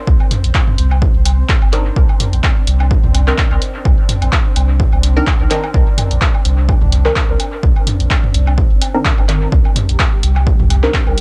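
Meditative and hazy, this dub techno excerpt at 127 BPM sits on a single Cm9 chord in C minor with a lightly swung 16th feel, as an up-front punchy analog kick and a round sine sub bass with tube saturation anchor a gritty, dry hardware mix, while an analog drum machine's handclaps and hi-hat and overdriven, layered electronic woodblock and toms carry dub echo, a resonant, detuned sawtooth texture bubbles through random filter steps with chorus and its own reverb, and from 1.7 s a muted, nasal chord stab with a moving notch, phaser and cassette-tape color pumps against the kick.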